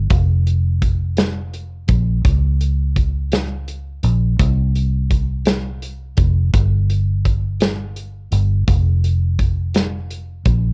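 A muted, fingered electric bass opens this short excerpt of a six-eight pop ballad, its dark, round, foam-muted tone sitting up front, and a natural country drum kit of hi-hat, punchy kick and medium-tuned snare joins at 0.1 seconds. The mood is romantic and swaying at 56 dotted-quarter beats per minute, with the acoustic kit captured in a small room and carrying the soft grit of cassette tape. A light reverb and home-recorded character give the whole piece an intimate, homespun feel.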